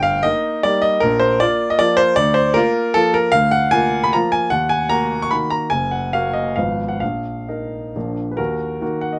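Classical romantic piano music in the form of a triple-time dance in 3/4, with dotted rhythms and a freely rubato pulse that moves between 121 and 163 BPM. The mood is nostalgic and capricious, settling into Eb minor from 3.3 seconds after opening on an Eb chord over G and a Bb chord over D. A baby grand piano plays solo from the start to 9.2 seconds, ranging from Gb1 up to Db6, with a polished, present tone set up front. The harmony passes through a lush Gbmaj13, a diminished chord over Ab and a Bbsus4 that resolves to Bb before returning to Eb minor at 8.4 seconds. Close, detailed microphones and little reverb give an intimate, dry sound to this short fragment cut from a longer piece.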